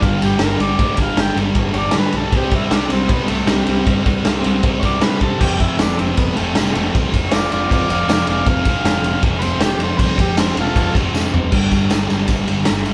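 A raw, rowdy garage rock cut captured live in one room with light reverb, this fragment of a longer piece opens on a buzzy, overdriven vintage combo organ soloing over a double-tracked fuzz guitar riff, a growling picked bass tucked in the background and an up-front, saturated drum kit with a punchy kick and gritty, rolled-off top. A jingly tambourine joins in the background at 5.8 seconds, the organ stops at 11.0 seconds, and a drum fill leads into a new section at 11.5 seconds, where guitar, bass, drums and tambourine carry on over power chords moving among G5, C5 and F5.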